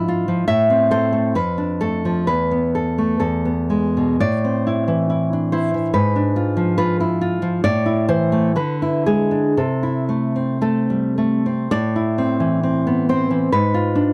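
A fingerpicked nylon-string guitar plays alone and up front in this brief, intimate and melancholic romantic classical excerpt in A minor, moving with rubato in 2/4 at 50-73 BPM through shadowy harmonies such as Esus4 resolving to E and a recurring G#dim7, while close, detailed microphones catch its acoustic tone, audible finger squeak and a light touch of reverb.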